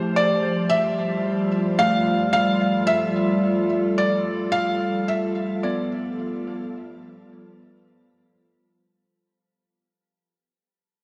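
Peaceful and luminous, this ambient excerpt at 54 BPM sets a soft, felt-muted upright piano melody with audible action noise, up front beside a warbly, nostalgic tape-like pad of detuned sustained chords, while a bell-like tine electric piano traces bright arpeggios and a calm organ-like drone hums on F3 in the background, the piano, pad and electric piano glowing in shimmer reverb within a wet scoring-stage space as a G9 chord arrives at 0.2 seconds and the sound fades out from 3.1 seconds.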